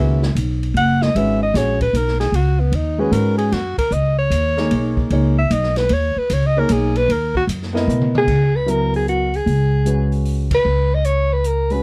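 Modal jazz in a swung 3/4 at 152 BPM in C# dorian, intense and cool, this short cut opens with a vibrato-laden alto saxophone solo full of scooped notes until 7.4 seconds over natural grand piano, thumpy gut-string upright bass played pizzicato, and a distant, roomy drum kit with dark cymbals and a boomy kick, then as a drum fill rounds off the section a mellow, forceful soprano saxophone takes the melody at 8.2 seconds, with a band accent at 10.5 seconds, all in a dry sound.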